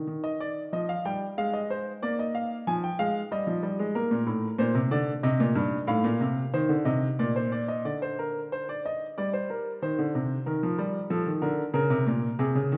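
A wet recital-hall reverb surrounds a solo baby grand piano, which sits up front with an open, warm tone and short sustain. This is a serious, contemplative classical piece in the baroque manner, a two-part invention in triple metre with a straight feel, its lines spanning G2 to Ab5. Cut from a longer work, the 12.8-second passage moves into a second section at 7.9 seconds, where the harmony leans toward minor chords before ending on Bbm.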